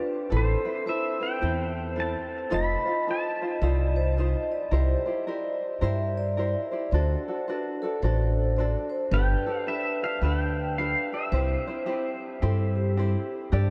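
Hawaiian swing in C major at 109 BPM, dreamy and sunny, with a mellow vibraphone on soft mallets shimmering with slow motor vibrato over a light, fingerpicked tenor ukulele and a woody, dark pizzicato upright bass that sits up front from 0.3 seconds. A clean electric pedal steel guitar carries the melody with slide and volume swells, drenched in lush chorus and tape echo, playing from the start to 4.5 seconds and returning at 9.1 seconds. The whole mix is soaked in a huge ambient reverb, giving this short excerpt an airy, floating glow.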